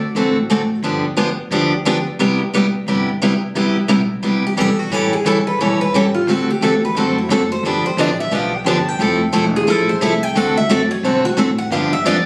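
Charming and swinging, this jazz manouche fragment moves at a brisk 177 BPM in C major, with a picked steel-string acoustic guitar playing warm, up-front accompaniment over a dark, thumpy upright bass played pizzicato on woody gut strings. A second picked steel-string guitar, full-bodied with fresh strings and audible finger squeak, flickers in at the very start and then takes a solo from 4.5 seconds as the chords cycle through dominant sevenths toward Cmaj7 and Fmaj7. The sound is captured on a phone in a club, with a moderate room reverb.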